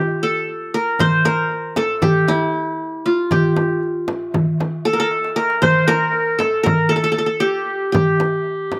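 A bright-edged, plectrum-plucked qanun leads this stately, passionate Turkish makam excerpt in 9/8. It sits up front with a slapback echo on its triple strings, while a distant clay-shell darbuka played with hard hands joins at once and a close, dry frame drum follows at 1.0 seconds. After a drum fill at 5.1 seconds, a clear, punchy clarinet with light vibrato enters at 5.6 seconds as a forceful, jazz-style second line, also touched by slapback echo, all under a light outdoor reverb.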